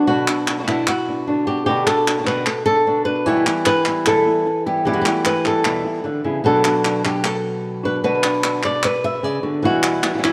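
Passionate and dramatic, this brisk flamenco excerpt in B minor at 151 BPM sets a fingerpicked lead guitar, up front with slapback echo and audible finger squeak, over a second guitar's stabs and crisp palmas hand claps joining at 0.3 seconds, all moving between Bm and Em within a moderate plate reverb.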